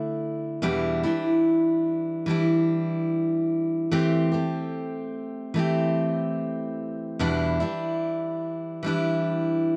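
A picked steel-string acoustic guitar, full-bodied and up front with light reverb, plays alone through this melancholic, emotional pop excerpt in E minor at 73 BPM, moving from Dsus2 through Em7 and C6/E back to Em7 across 9.8 seconds in a dry, close 1970s-style studio sound.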